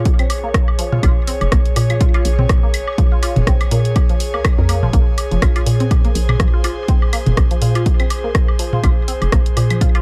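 A punchy, up-front electronic kick anchors this cool, hypnotic minimal techno cut from a longer piece, alongside a tape-saturated house kit of hi-hats and rim clicks, delayed electronic woodblock and toms that ring in a large room, a hollow, bouncy FM bass pumping under the sidechain, a squelchy, resonant blip-pluck riff with phaser, subtle chorus and delay, and a soft, breathy pad with chorus, all riding a swung 16th-note groove in a dark production with light reverb.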